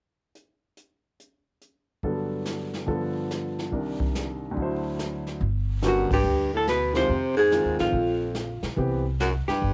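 A dark, clean hollow-body electric guitar carries the melody from 5.9 s beside a smooth-topped baritone saxophone with light vibrato, over brushed drums with dark cymbals and a boomy kick, an up-front baby grand piano in accompaniment, and a woody, thumpy pizzicato upright bass entering at 5.4 s, giving this brief swinging small-group jazz fragment a sophisticated, warm mood, a cassette home-recording sound with light reverb, and a band accent at 6.0 s.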